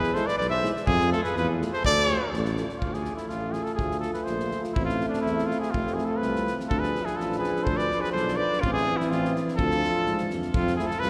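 A brisk 2/4 pulse at 124 BPM drives this virtuosic, bittersweet Balkan brass band excerpt in D Dorian sharp four, with a loose acoustic drum kit of tight kick and medium-tuned snare, its rolled-off top and small-room tone, keeping time throughout. Beneath it a mellow tuba carries the bass with light vibrato and a smooth top. Up front, a clear trumpet in classical style leads the melody from start to finish. A punchy, warm flugelhorn sits in the background on a second line, dropping away at 2.3 seconds and returning at 5.7 seconds. A euphonium with gentle vibrato and a smooth-topped trombone fill out the accompaniment behind the harmony as it opens on E and moves through F, D minor and A minor. The whole band rings inside a long, wet cathedral reverb that gives the piece a spacious church-hall glow.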